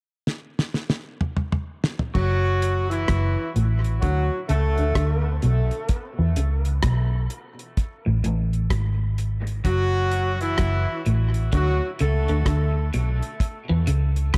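A round, punchy, foam-muted electric bass sits up front in this heavy, meditative dub reggae excerpt, entering at 2.2 seconds and holding the low end in F# minor at a slow 64 BPM with a swung sixteenth-note feel. A damped 70s drum kit opens the track with a fill from 0.3 seconds, its fat snare, tight kick, rim clicks, toms, hi-hat and dark cymbals sounding dry and rolled-off at the top. At 2.1 seconds a twangy, scooped clean electric guitar takes up a riff in the background, run through a low-pass filter sweep and dub echo. A mellow horn section plays a second line with light vibrato and octave doubling, its loose, smooth-topped phrases also trailing dub echo before dropping out at 12.9 seconds. The harmony cycles through F# minor, D and E5 with brief chordless gaps, and the whole mix sits in an echo-heavy studio reverb.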